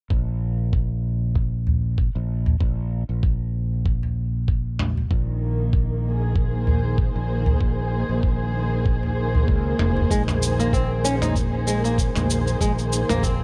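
Organic downtempo at 96 BPM in 4/4, this hypnotic, earthy excerpt from a longer piece rides a light 56% swing on the sixteenths, tuned to A4 = 439 Hz and opening on a Bb9sus4 chord. A thumpy, gritty, sampler-style electronic kick sits up front from the start, with a bright fretless electric bass, also up front, moving low between F1 and Db2 through tube saturation and a subtle chorus. A deep, band-limited udu joins at 1.7 seconds, while tape-toned electronic toms and shaker, compressed and re-recorded in a small room, make a brief appearance before returning for the closing stretch. A dark, woody studio string section enters at 5.1 seconds with lush bowed chords full of vibrato and a smooth top, pumping under sidechain. At 10.1 seconds the piece moves into a new section as a fingerpicked flamenco guitar with fresh strings adds warm arpeggios, softened by a low-pass filter and trailed by delay, all set in a small room ambience.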